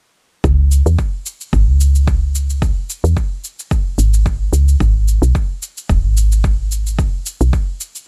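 A dry recording carries this short, mystical and earthy organic downtempo cut with a light sixteenth-note swing. A round, dark FM bass with a woody, soft tone and a fast, decaying attack sits up front and pumps against the sidechain, alongside a deep, produced electronic kick also placed forward in the mix. A quieter cabasa with a tape-warm, small-room character runs on until 8.1 seconds, just after the bass and kick drop away.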